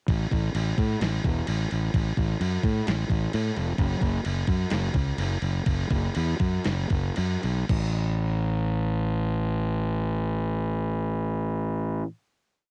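Blissful and dreamy, this complete shoegaze and dream pop rock piece sits in straight 4/4 at 110-130 BPM, tuned to A4 = 437 Hz, and carries the dry, intimate character of a home cassette recording. An overdriven, growly fuzz bass drives eighth notes up front beside a crisp 8-bit drum machine with a thumpy kick, medium-tuned snare and crash cymbal in a big half-time groove. The tempo slows from 3.8 to 7.7 seconds, the drums stop at 7.8 seconds, and the punchy bass holds a final note until 12.0 seconds.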